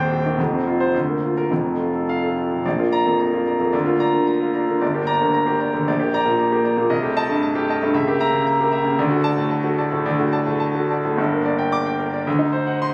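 A passionate, stormy classical virtuoso piano study in 2/4 at 104-118 BPM, played with rubato on a solo concert grand with clear, up-front tone, deep bass, long sustain and audible action noise, moving from Bb major into G minor at 6.9 s through tense diminished harmony before ending on a D7b9 chord, all caught on a phone in a wet recital hall with club-like reverb in a short cut from a longer piece.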